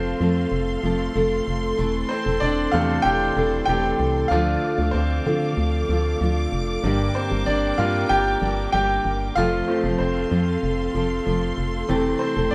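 A clear, up-front grand piano leads this anthemic, uplifting piano-driven pop excerpt from the first moment, carried by a full-bodied fingerpicked steel-string acoustic guitar riff, a hollow, dark organ-like FM bass with a percussive, decaying attack, and soft, bowed string chords with vibrato, with the band heard playing together in a moderate studio room as the harmony moves through F, Am/E, Dm and Gm before returning to F and Am/E.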